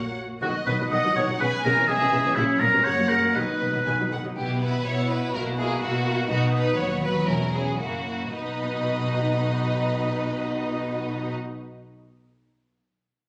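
Lively and graceful, this quick classical-period movement for symphony orchestra in B major unfolds in a rubato 2/4 at 106-128 BPM. A rich, vibrato-laden violin section carries the expressive melody while a second, focused violin section shares a second line. Beneath them the viola section glides with soft attacks and portamento, the cello section supplies a warm, expressive bass over a smooth, even double bass section in the background, and dark, punchy French horns hold sustained chords until 4.1 s alongside a roomy solo oboe up front on the second line. The tempo slows from 5.8 to 8.4 s before the harmony returns to B, heard through a wet recital-hall reverb captured on a phone with studio ambience.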